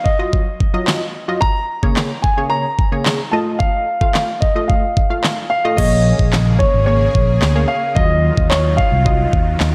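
A dark, mellow baby grand piano carries the melody with delay and slapback echo over an up-front pop drum kit of knocking kick, fat snare, handclaps and crash cymbal and a funky, detuned sawtooth polysynth comp with chorus and sidechain pumping in this energetic, driving dance-pop excerpt set in light digital reverb, and at 5.8 s a lush, bright supersaw pad with phaser and a round, punchy, foam-muted electric bass join, both with sidechain pumping.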